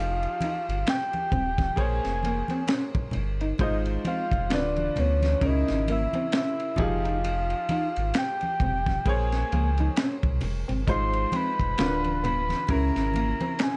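A soft, octave-layered synth lead carries the melody up front from the start, its round, detuned tone thickened by a sub octave, vibrato and chorus, and set in plate reverb. This slow neo-soul and R&B excerpt moves at 66 BPM in 4/4 with a swung sixteenth-note feel, and the mood is smooth and warm. A clear, slightly worn grand piano accompanies through chords such as Fm9, Bbm9, Ab6, Dm6 and Dbm6, while a deep, full sub bass with an added octave sits up front beneath it. A crunchy breakbeat kit enters at 0.2 seconds with a punchy kick, high-tuned snare, dark cymbals, hi-hat, ride and finger snaps, all with a rolled-off top in a small room. At 0.4 seconds a lo-fi electric guitar through a small old amp adds a slightly broken-up second line coloured by analog chorus, joined by ringing, low-tuned congas played close with hard hands. The production is dark with light reverb, and the piece is cut from a longer work.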